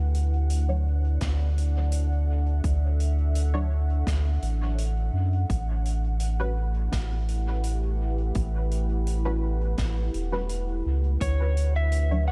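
A hazy, spacious digital ambience surrounds this ambient dub fragment, where a round, up-front sine sub bass sits beneath a dark, detuned sawtooth pad with chorus sustaining chords over D, A13 and Dmaj7, while a distant soft-mallet kit's hi-hat and snare and muted chord stabs with 12-bit sampler grit both trail dub echo, an overdriven electronic kick stays in the background, and at 11.2 seconds a slightly broken-up slide guitar enters with echo just before a barely audible reversed, granular swell appears at 11.7 seconds.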